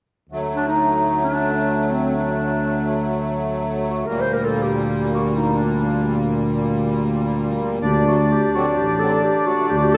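A dark, distant clarinet carries the melody from 0.6 seconds, playing in a classical solo style that gives this soulful, bittersweet klezmer fragment its voice. It moves in free time over the D phrygian dominant mode, cut from a longer piece. From 0.3 seconds a shimmering musette accordion sits up front with its vintage, band-limited reed tone, while a tuba with a smooth top anchors the low end in its own classical solo manner. The harmony rests on D, shifts to a rootless C7sus2 over D, then returns to D as a new section begins at 7.8 seconds. There a second, mellow accordion enters with a full, reedy second line on a single D, close-miked, dry and louder than the rest. A recital-hall reverb, in the manner of a church or concert hall, lends the clarinet its roomy distance.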